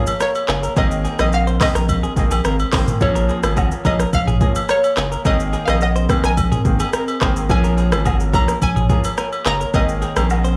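A straight 4/4 afrobeats groove at 107 BPM in Bb minor rides on an electronic afro-pop drum kit with a deep kick, metallic hats, handclaps, rim clicks, shaker and toms, while agogo bells and woodblock add acoustic percussion and a saturated sine sub bass enters at 0.5 seconds, thick and up front. Over a sultry, smooth cycle of Bbm7 and Abadd9, a hollow, bouncy square-wave pluck carries the detuned, chorused melody, a clear grand piano with audible action noise plays intimate accompaniment, a bright, twangy direct-recorded clean electric guitar picks a compressed riff, and an ethereal glass harmonica holds beating, band-limited chords in the background. Dub echo trails the pluck, piano, guitar, drums and percussion in this echo-heavy cut from a longer piece.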